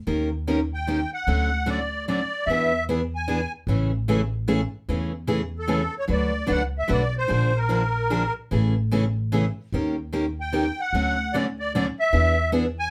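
Acoustic string swing in the jazz manouche style, playful and swinging at 149 BPM in 3/4 and A major, with a bright, picked steel-string guitar up front carrying the accompaniment alongside a woody, thumpy pizzicato upright bass on gut strings, while a reedy, shimmering musette accordion takes the melody in phrases entering at 0.7, 5.6 and 10.4 seconds over chords moving through D#7, Dmaj7, E7 and Amaj7 in a moderate studio ambience, the guitar's finger squeak audible in this excerpt from a longer piece.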